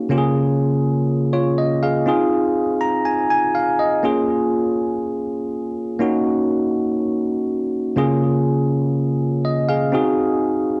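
Pop with an urgent yet nostalgic mood, set in a straight 4/4 feel, carried entirely by a solo tine electric piano that sounds bell-like, barky and up front, treated with subtle chorus, analog delay and a cassette tape character. A short electric piano fill arrives at 2.6 seconds as the minor seventh chords move toward a closing dominant seventh. The piece sits in a wet studio reverb with the feel of a home cassette recording, cut from a longer piece.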